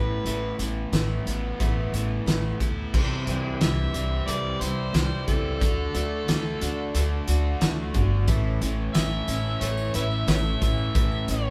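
A straight 90 BPM groove in 4/4 drives this open-road, jangly folk and heartland rock excerpt, where a gritty, amplified harmonica carries the melody over bright picked acoustic guitar, a double-tracked crunchy electric riff, woody pizzicato upright bass and a loose kit with a fat snare and dark cymbals, joined at 2.9 seconds by a reedy, breathing harmonium and at 8.3 seconds by a very quiet jingly tambourine, all captured as a band playing live in one room with moderate studio reverb.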